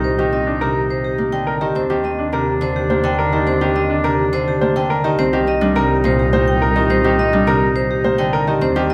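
Classical minimalist pattern music in a hypnotic, meditative 3/4 at 105 BPM in C minor, this 8.9-second fragment of a longer piece moves from Cm7 to Ebmaj7 and back while a dark, metallic vibraphone melody with medium hard mallets rings over clear, short-sustained piano arpeggios, bright up-front fingerpicked Celtic harp accompaniment, a distant oboe second line with light vibrato, and a warm bowed double bass sliding expressively beneath, all bathed in a wet recital hall reverb.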